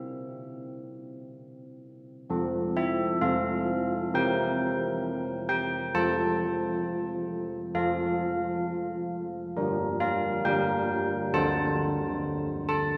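In a straight 4/4 at a measured 66 BPM, this short classical fragment cut from a longer piece sets a serene yet festive tune for church bells in F major. A set of old church bells carries the whole piece alone from 0.0 to 13.0 seconds, ranging from D3 up to A5. Their bronze, clangorous tone carries a distinct minor-third overtone and a gentle beating, softened by a padded clapper into a mellow, airy ring. The harmony opens on C in a brief first section, then settles into a longer passage from 2.3 seconds that moves through F, C7 and back to F before passing through Gm and closing on D7. A wet church reverb with a long 3.4-second decay places the listener further back in the room, so each strike blooms and lingers in the space.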